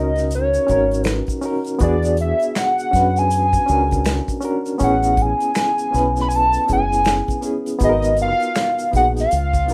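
A rough home-demo sound with vinyl crackle and a small, moderately reverberant room frames this relaxed, warm neo-soul R&B excerpt, moving at 80 BPM in 4/4 with a swung sixteenth-note feel. Up front, a hollow, nasal square-wave lead carries the melody, its tone dark and woody with a sub octave, a filter sweep, vibrato, chorus and slapback echo. Beneath it, a reedy, worn electric piano plays the chords through its built-in speakers with a fast tremolo, sounding slightly out of tune, while a round, punchy fingered electric bass holds the low end. At 0.2 seconds an acoustic kit played with bundle sticks comes in with finger snaps, hi-hat, a tight kick and a medium-tuned snare, alongside a quieter tube shaker with finger snaps and group handclaps. The harmony moves from a rootless Bmaj9 through E13 and Amaj9 to G#m9.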